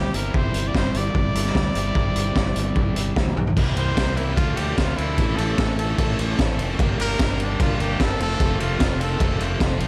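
Indie rock at 149 BPM in 4/4 with a straight feel, this short cut from a longer piece feels restless and moody, with a dark production and light reverb overall. A bright trumpet with light vibrato carries the solo melody from the start, sitting present in the mix with plate reverb and running between D4 and D5. Beneath it, a cranked stack guitar plays an overdriven, picked riff in the background, while a raw garage guitar adds a very quiet, picked, overdriven riff, and a fuzz fingered electric bass growls with a punchy, fuzzy, overdriven tone. The raw garage drum kit sits up front with a small-room, gritty character, a high-tuned snare, a boomy kick and a rolled-off top, and it plays a fill from 3.2 to 3.6 seconds. At 3.6 seconds a vintage, buzzy combo organ enters with barely audible sustained chords as the harmony moves from Cadd9/G through C7, Dm7, A and Gm7 to Fmaj7.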